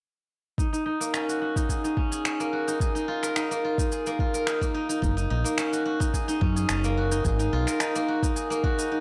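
A steel-string zither leads this excerpt of organic downtempo, played with fingerpicks in ringing, silvery arpeggios between Bb3 and Bb4, softened by a low-pass filter and trailed by analog delay. The mood is mystical and warm, moving at 108 BPM in a straight 4/4 in Eb minor, with chords passing through Ebm7, Bb7sus4, Gb6 and Ab7(no3). Beneath it, a soft, overdriven electronic kick and electronic shaker with finger snaps, re-recorded in a small room, carry the beat from 0.6 seconds. At 5.0 seconds a woody fretless electric bass enters, dark, round and punchy with a hollow-body tone and a subtle chorus, sitting up front between Gb1 and Gb2 until 7.6 seconds. The whole excerpt has light reverb and a dry, gritty hardware sound with transformer saturation.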